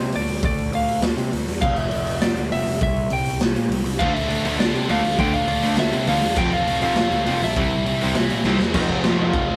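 A twangy, slightly broken-up lead guitar carries the melody over a growly fuzz bass and a gritty, punchy garage drum kit in a pumping stone room, opening this upbeat, rebellious punk rock excerpt at 202 BPM in F major with a half-time feel. At 4.0 seconds two double-tracked rhythm guitars enter together: one a heavy high-gain distorted riff, the other a rawer overdriven one. The chords move from Dm through F and C before a drum fill at 8.5 seconds, all captured in a rough rehearsal-room sound with light reverb.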